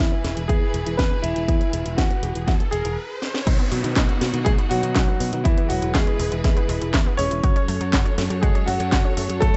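A punchy, overdriven electronic kick sits up front in this melodramatic, bittersweet italo disco excerpt at 121 BPM, joined by an overdriven house kit with a cracking snare, handclaps, hi-hat and crash, a growly picked electric bass, a warm concert grand piano carrying the melody through tape echo, a rich bowed chamber string section holding background chords under a filter sweep, a round, nasal analog pluck playing chorused, echoed arpeggios, and a background riser and downlifter, with a brief stop at 3.0 s and a drum fill at 3.2 s before the chords move from E to B, E and F#m, captured in a dry, gritty hardware recording.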